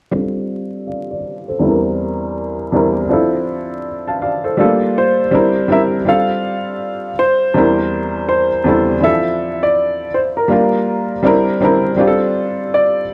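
A lazy 81 BPM hip hop groove in 4/4 with a loose sixteenth-note swing sets a mellow, dreamy mood in F major, its chords drifting from F6 through C9/E, Dm9 and Gm9 to C9 before circling back. A felt-muted upright piano carries the accompaniment throughout, sounding soft, intimate and up close with audible action noise, its low-passed tone shifting under a filter sweep until 6.1 s. A woody upright piano enters with the melody at 5.0 s, and both pianos sit in plate reverb alongside a bed of vinyl crackle in this brief excerpt of a longer piece.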